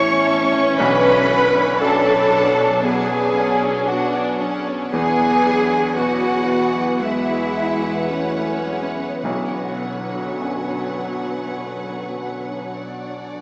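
In a free, rubato 4/4 that seems to breathe, this cinematic fragment of a longer piece carries a longing, moving mood. A lush, bowed symphonic violin section holds the melody, joined in the same high register by a focused studio violin section and a pure, softly attacked flute section, each carrying a second line of its own. A solo classical clarinet adds another line beneath them. The French horn section sustains mellow, smooth-topped chords, while a smooth, distant viola section and a bright, brilliant baby grand piano, set low in its range, fill in the accompaniment. A ringing, thumb-plucked concert harp spreads arpeggios across a broad span, over a bass of close cello section and woody double bass section, and soft-mallet timpani with a round tone enter very quietly from 9.2 to 10.9 seconds. Chords drifting between B minor and E colours sit in a vast, echoing reverb with a long tail, heard through a small-speaker sound.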